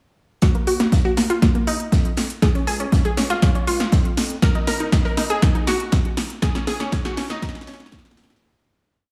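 An expansive, emotional progressive house build-up opens at 0.4 s with a bright, detuned analog pluck repeating a sixteenth-note riff over a pedal note, carrying chorus, analog delay and sidechain pumping under a filter sweep, alongside an up-front four-on-the-floor electronic kick, a deep house kit's punchy snare and smooth programmed hats in a drum fill, a very quiet saturated sub bass driving eighth notes, and a distant, roomy unplugged kit playing a looped breakbeat, in a dreamy, reverb-soaked mix that fades out from 5.8 s.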